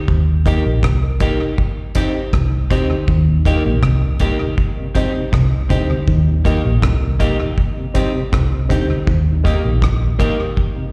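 A sunny, warm mood runs through this straight-feel roots reggae excerpt in 4/4, cut from a longer piece. A vintage muted fingered electric bass sits up front with a round, punchy, foam-muted tone, alongside a deep reggae drum kit whose dry hi-hat, tight kick and rim click carry a rolled-off top and a touch of tape echo. A clean, picked electric guitar and a boxy baby grand piano with short sustain play stabs and accompaniment over the alternating Eb and Cm chords, both lifted by slapback echo. A second, fingered electric guitar enters at 3.1 s with a compressed riff in the background, bathed in spring reverb. At 3.3 s a very quiet, lightly overdriven tonewheel organ joins with chorus vibrato and a slow rotary speaker. The whole band sounds like a live gig heard through the venue's PA, with light reverb, studio ambience and recital-hall reverb.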